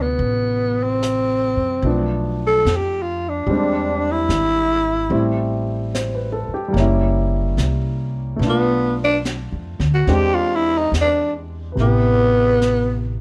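A growling tenor saxophone leads this melancholic, wistful jazz ballad in A minor, soloing up front over a baby grand piano and pizzicato upright bass, with a brush drum kit joining at 0.2 seconds. The tempo is a slow 73 BPM in 4/4 with a swung eighth-note feel. The saxophone's breathy subtone carries vibrato, scooped notes and a raspy, gritty edge. The piano sounds intimate and natural, its action noise audible beneath the chords, while the bass is woody and thumpy with gut strings. The drums sit low in the mix, a small-room kit of brushed snare, high-tuned snare and hi-hat with a dark, rolled-off top. Light reverb surrounds the group as the harmony moves through minor ii–V turns such as Bm7b5 to E7alt before settling on Am9 at 11.8 seconds, where this fragment of a longer performance shifts into a new section.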